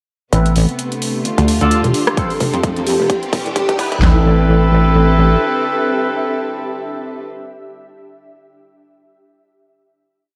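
A swung four-on-the-floor groove at 130 BPM in 4/4 drives this swaggering, bouncy bass house piece in A minor, where a metallic, aggressive wobble bass sits up front beneath dark, sustained chamber strings and distant, filter-swept horn stabs with tape echo, an ethereal airy pad drifts in at 0.9 s, and an overdriven big-room kit of metallic hats and rim clicks gains a punchy kick, huge snare, claps and toms alongside a background riser and a brief mellow vibraphone figure, before the build-up gives way at 4.0 s to a final Amadd9 chord held by strings and horns until 7.3 s and by the pad until 7.5 s.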